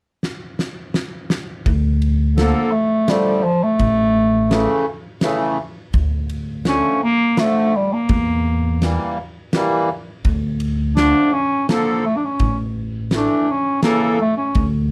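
The recording has a dark, warm production with light reverb, and it is cut from a longer piece. This soulful, festive klezmer tune moves at 84 BPM in a straight 3/4 lilt, in D harmonic minor. A huge arena drum kit opens with a fill at 0.2 s, its punchy kick, fat snare and ride cymbal carrying a big-room, smooth weight. The upright bass enters at 1.7 s, plucked and woody with steel strings, sitting up front in its low register. At 2.4 s a clear, vintage bass clarinet takes the solo melody in a classical style, joined by a reedy, sweet accordion with light tremolo tuning, both placed up front. The harmony circles through Dm, A and Edim before settling back on Dm and A.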